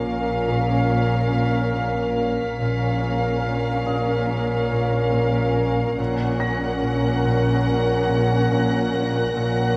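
Veiled, con sordino violin sections open this ominous, mysterious suspense-film cue with a high melody and a second line, over close muted violas, a distant cello section in the background and a lush double bass section, while a ringing, fingerpicked concert harp riff sits beneath, a faint high violin texture floats above, and a boxy, mellow grand piano with audible action noise slips in at 0.5 seconds, set in a wet scoring-stage reverb.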